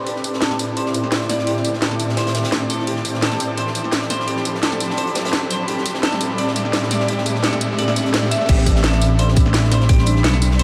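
Soaked in vast reverb, this dreamy, soulful liquid drum and bass excerpt at 171 BPM in A minor opens with a shimmering, ethereal ambient pad holding sustained chords, bright, twangy clean electric guitar arpeggios under a filter sweep, a background riser and two drum kits (an up-front layer of cracking snare, metallic hats, crash and tambourine over a dark, gritty breakbeat kit) building until the drop at 8.5 seconds brings in a smooth, detuned sawtooth synth bass and a tight electronic kick.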